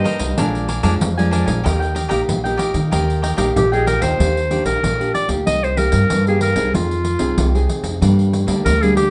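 A straight, easy 4/4 pulse at 94 BPM carries this playful, joyful fragment of samba and choro in Eb major, with a jingly pandeiro setting the groove under a woody, pizzicato upright bass that sits up front. A fingerpicked nylon-string guitar in classical style supplies the accompaniment throughout, its finger squeaks audible, while a crisp, picked cavaquinho adds brightness to the harmony until it drops out at 4.2 seconds. Up front, a clear clarinet with a smooth top and a classical touch carries the melody, taking a solo in the opening stretch before the music moves into a new section at 4.2 seconds. The harmony moves from Bb7 to Eb, then on through Ebmaj7, Cm7, Fm7 and Gm. A moderate studio reverb and a slightly distant, soft-topped sound give the ensemble a relaxed, roomy feel across the full 9.1 seconds.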